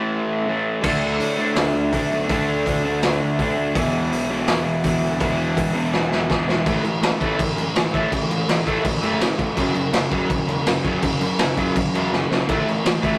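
Rowdy and energetic, this punk rock excerpt at 165 BPM in A major opens in half time, with guitar riffs from the start: an up-front overdriven semi-hollow guitar, a brighter hollow-body partner in the background, and a very quiet, double-tracked crunchy overdriven guitar. At 0.8 seconds a growly fuzz electric bass and a raw garage drum kit enter; the kit sits up front with a boomy kick, medium-tuned snare, hi-hat and crash cymbal, a gritty, saturated small-room sound and a rolled-off top, and a drum fill leads into the second section at 6.7 seconds. The rough rehearsal-room recording carries light reverb, and the chords move through A5, D5, E5 and F#5.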